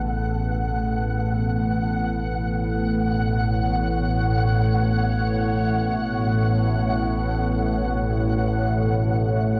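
Dark ambient drone in free time, this cavernous, ominous fragment of a longer piece rests on a single Asus2 chord for 9.6 seconds, tuned to A4 = 441 Hz. An up-front analog drone in the low register, built from sawtooth, pulse and triangle waves with ring modulation and chorus, anchors the sound beneath an airy, detuned resonant pad that glows bright over a noise layer. A flickering, grainy granular texture hovers high on F#5, and a warm, soft-attacked bass clarinet is barely audible for the first 1.1 seconds, all steeped in a huge, wet reverb with an 8.4-second tail.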